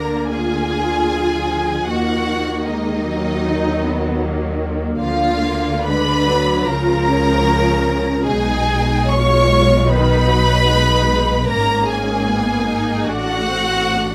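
Uneven, rubato beats at 75 BPM in 4/4 carry this slow, melancholic and elegiac romantic movement for string orchestra in Eb minor, cut from a longer piece. An up-front, lush violin section sings the expressive melody with vibrato, while a second, clear and more distant violin section plays a focused line beneath and a warm, smooth-topped viola section supplies the accompaniment. A rich double bass section anchors the bass up front, and a cello section adds portamento from the background, all of them bowing through the 14.1 seconds under light reverb as the harmony passes from Bb7/D through Ebm to Am6.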